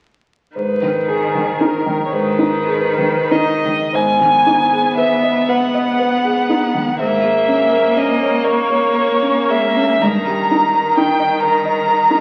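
Classical slow romantic movement for piano trio in 6/8 with free rubato, solemn and elegiac, where a rich, close violin with smooth vibrato carries the melody over a focused bowed cello second line and an intimate, clear grand piano accompaniment whose action noise is audible, all heard through a wet recital hall and the crackle of a very old 78 rpm record in this fragment cut from a longer piece.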